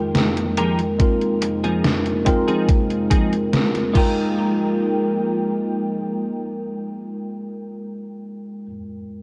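A worn, slightly out-of-tune tine electric piano and a warbling, detuned tape-like pad open this melancholic, woozy vaporwave excerpt in F minor at 71 BPM, joined by a gated, overdriven 80s drum machine with crunchy 12-bit grit, a bright, twangy clean electric guitar riff with chorus and tape echo entering at 0.6 seconds, and a thumpy, up-front electronic kick from 1.0 to 4.1 seconds, all over Fm11 and Bb9sus4/F chords with a cassette tape sound.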